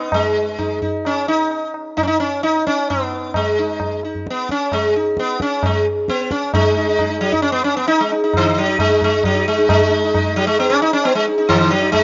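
Meditative and solemn, this brief Hindustani classical excerpt in raga malkauns on Eb, set in 7/4 at 132 BPM and speeding up throughout, features an up-front, bright, buzzing sitar carrying the melody between Eb3 and Eb4 with shimmering sympathetic strings, joined at 0.1 seconds by a high-tuned, close and dry tabla with a short ring, all in a rough home demo mix with light reverb and a dulled top end.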